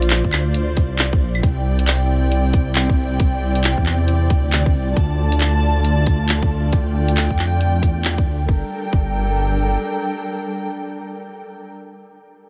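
A swung 16th-note groove at 136 BPM in 4/4 drives this ghostly, wistful future garage excerpt in G dorian, with a tight, up-front electronic kick entering at 0.2 s beside a garage kit of claves, handclaps and warm hi-hats that stops at 8.2 s, both carrying a small-room character. Alongside them, a deep, rumbling detuned sawtooth bass and a lush, woody string section holding bowed chords with vibrato share a sidechain pumping effect. The harmony moves through Bb, Cadd9 and Dm before settling on Gmadd9 at 8.5 s, all under light reverb.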